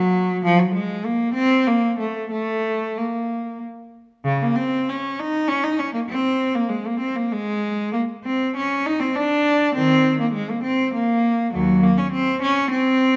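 In a flexible, rubato 3/4 that hovers between 91 and 103 BPM, this short cut from a longer baroque-style suite movement for unaccompanied cello unfolds with an introspective, grave mood. A single bowed cello, placed up front, carries everything alone across its 13.2 seconds, ranging from Eb2 to Eb4 with a warm, focused tone, a smooth top and vibrato. A wet recital hall reverb with a 1.5-second decay surrounds the instrument.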